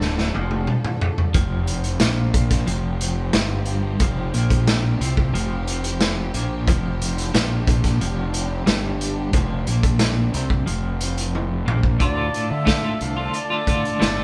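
A raw garage drum kit sits up front in this trippy, mysterious psychedelic rock excerpt at 90 BPM in a straight 4/4. The saturated, gritty kit pairs a punchy kick and medium-tuned snare with hi-hat and toms, rolls off its top and pumps within a small room, opening on a fill and adding another at 11.3 seconds. A dark, round fuzz bass, fingered and overdriven, sits just as far forward, while a bright, twangy twelve-string electric guitar plays a clean, compressed riff with tremolo. Behind them, a bowed studio string section holds sustained chords with vibrato and portamento, moving from D minor to Fsus2 and back to D minor as a breathy, close-miked concert flute enters at 12.0 seconds with a soft-attack melody through tape echo. The band plays live together in a stone room with moderate reverb.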